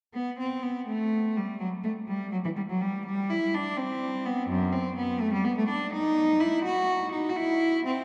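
A 6/8 pulse, stretched and loosened by rubato, carries this grave, solemn fragment of a baroque-style suite movement for solo cello, cut from a longer piece. A single bowed cello plays from 0.1 to 8.0 seconds with a nasal, gut-string period tone and light vibrato. It sits up front in a vast cathedral whose long, wet reverb hangs around every note.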